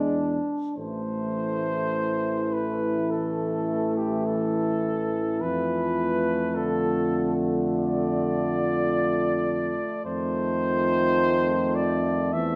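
Yearning and solemn, this hymn-like classical piece for brass band moves at a slow 52 BPM in 4/4 with a rubato feel, set in A minor and cut from a longer work. The dark cornet carries the melody up front, entering at 0.8 s with a soft attack and light vibrato, its tone distant and roomy. Beneath it, a French horn section sits in the background on the second line, and a clear trombone section with light vibrato fills in the accompaniment alongside a single warm trombone with a smooth top. A mellow tuba anchors the bass with its own light vibrato and a present sound. The harmony moves from E to A minor, then to D minor over F at 5.4 s, and settles on F7, all carried by a wet recital hall reverb that gives the ensemble a spacious, reverent glow.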